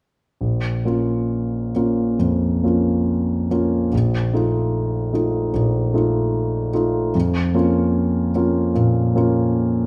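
Yearning and solemn, this fragment of a longer classical piece unfolds in a flexible, rubato four-beat pulse. A grand piano carries the accompaniment, ranging from a deep Bb1 up to F4. Its warm, intimate tone sits up front, with long sustain and audible action noise that keep it close and natural. The harmony moves from B-flat minor to F7 over a B-flat bass at 3.9 seconds, then settles on B-flat minor over F at 7.1 seconds. A recital hall's reverb, with about 1.5 seconds of decay, lends the piano a wet, spacious glow.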